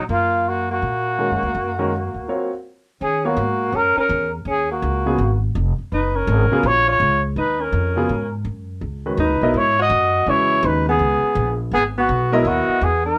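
Modal jazz with a spiritual, cool mood, swinging at 165 BPM in 4/4 and settling into Eb phrygian at 3.0 s after a brief break at 2.3 s, heard as a cut from a longer piece. A dark, breathy trumpet carries the melody up front with vibrato and scooped notes, its whispered tone intimate yet roomy, while a punchy alto saxophone with a smooth top plays a forceful second line beneath it. A woody pizzicato upright bass sits up front, and a grand piano with deep bass and audible action noise accompanies from 1.2 s over Ebm11 and Dbm11 harmonies, all set in a moderate studio reverb.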